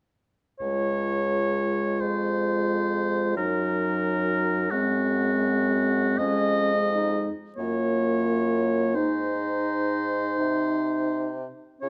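Serene and lyrical, this slow romantic movement for wind quintet moves in a rubato 6/8 at 43 BPM in Db major, tuned to A4 = 436 Hz, and is cut from a longer piece. A warm, smooth-topped oboe sits up front carrying the second line, while a clear, close-miked clarinet and a mellow French horn with light vibrato and soft attack supply the accompaniment over a present, clear bassoon bass. All four play together from 0.6 to 11.9 seconds through chords such as Gb6, Db/F and Gbmaj7, in a moderate recital hall reverb.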